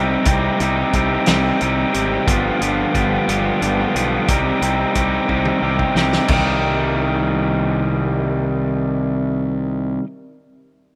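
A crunchy, bright overdriven guitar riff opens this cool, moody indie rock excerpt at 60 BPM in 6/8, up front over a round, fuzzy fingered electric bass with overdrive, moving through C minor and G7 in C harmonic minor. A loose acoustic drum kit with a fat snare, punchy kick and dark cymbals joins at 0.3 seconds, plays a fill from 5.3 seconds and drops out at 6.5 seconds, leaving guitar and bass to carry the second section. Light reverb and studio ambience give it the rough feel of a home demo.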